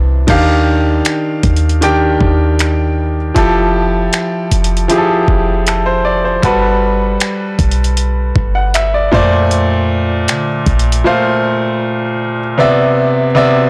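Contemporary R&B at 78 BPM with a smooth, romantic mood: this excerpt from a longer piece sets a clear, intimate baby grand piano with audible action noise over a deep, boomy 808-style bass and a gritty, compressed sampler-style kit of thumpy kick, hi-hat, finger snaps and crash cymbal, moving through Ebmaj9, Fmaj9, Gmaj9 and Bbmaj9 before bass and drums drop out at 11.0 seconds and the piano carries on alone into Cmaj9 at 12.6 seconds, all in a blown-out, overdriven recording with light reverb.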